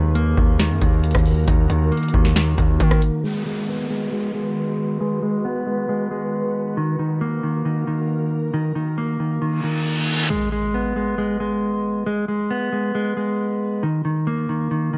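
Hip hop trap excerpt with an eerie, menacing half-time feel, where a dark, clean fingered electric guitar arpeggiates up front through delay and an ethereal pad sustains detuned chords in the background, while a punchy, saturated 808 bass and an overdriven analog drum machine with deep kick, crisp snare and metallic hats hit hard until about 3 seconds, giving way to a filter sweep, a reverse cymbal and an impact at 10.3 seconds.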